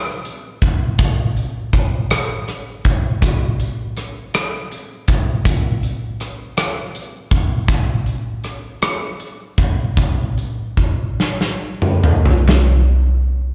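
A slow, straight 6/8 lilt carries this romantic, heartfelt pop fragment, cut from a longer piece and played entirely on a huge arena drum kit that enters at 0.2 s. The acoustic kit sits up front, with a punchy kick, a medium-tuned snare, hi-hat, rim clicks and toms heard in a big room. Its light reverb and recital-hall ambience, heard through a venue's PA at a live gig, give the performance a spacious, concert feel. From 7.7 s the groove begins slowing down, and a drum fill from 11.2 s to 12.5 s marks the turn into a brief closing passage. The kit falls silent at 12.7 s, just before the fragment ends.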